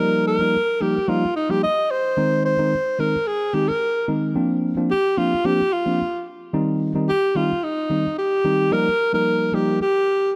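Mellow, smooth afrobeats at 110 BPM in a straight 4/4, tuned to A4 = 438 Hz. In this short cut from a longer piece, a breathy, whispered alto saxophone with a soft attack and a touch of delay carries an intimate pop-style solo up front, over a worn, slightly out-of-tune but clean tine electric piano that cycles through Ebadd9, Ab, Bbadd9 and Cm before returning to Ebadd9 at 8.7 seconds, all set in a small room with light reverb.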